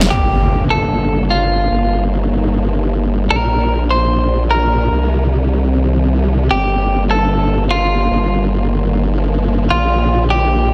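Chaotic and menacing, this dubstep excerpt cut from a longer piece moves at 150 BPM with a half-time, lightly swung feel in G minor, cycling through Gm, Eb/G, Bb and Cm. A detuned, formant-swept wobble bass sits up front with chorus and overdrive, while a thick, sawtooth unison pad with chorus holds sustained chords underneath and a clean, picked electric guitar carries the melody through tape echo. An electronic impact hits at the opening and lasts until 1.7 seconds, all set in a digital ambience.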